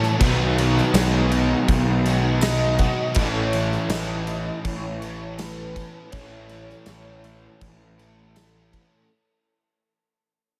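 Dreamy and wistful, this short cut from a longer shoegaze and dream pop rock piece moves at a relaxed 81 BPM in a straight 4/4, set in A lydian, and it fades out across its whole length. A big acoustic rock kit with a punchy kick, medium-tuned snare and crash cymbal drives it, while an up-front fuzz bass, overdriven and picked, holds low in its register. Beneath them, a double-tracked crunchy guitar and two overdriven semi-hollow guitars play riffs, one of them carrying an ensemble chorus and the other sitting very quiet, and a compressed twelve-string electric guitar adds clean arpeggios far back in the mix. A jingly tambourine enters at 0.9 seconds, close and dry but tucked in the background. At 2.4 seconds a velvety synth lead arrives with a smooth, detuned sawtooth tone, vibrato, chorus and a slapback echo, singing a short melody over the chords B6 and then A, all wrapped in light reverb and small-room ambience.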